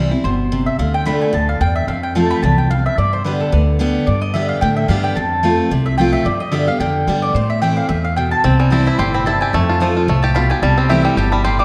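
Driving, joyful bluegrass at 220 BPM in C major with a swung eighth-note feel, cut from a longer piece, where a mellow, double-strung mandolin takes the lead with picked stabs over a bright, full-bodied dreadnought guitar and thumpy pizzicato upright bass until a twangy, fingerpicked banjo joins with arpeggios at 8.4 s, all set in a dark production with a wet concert-hall reverb.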